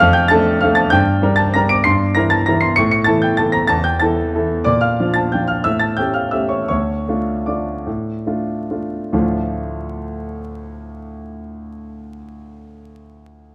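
Wistful and elegant, this classical piano waltz in 3/4 moves with a flexible, rubato feel. A single grand piano carries the whole piece alone from 0.0 to 13.5 seconds, ranging from D2 up to D7, its tone clear, smooth and vintage, with short sustain and an up-front presence. The harmony passes from a D minor opening through G minor, a diminished chord and A, then B-flat and A7 before settling back on D minor at 6.7 seconds. The pace slows between 6.1 and 9.1 seconds, closing the first section before a second section begins at 9.1 seconds. Close, detailed microphones capture the instrument in a large studio with moderate reverb, and a layer of vinyl crackle adds an aged patina to this excerpt cut from a longer piece.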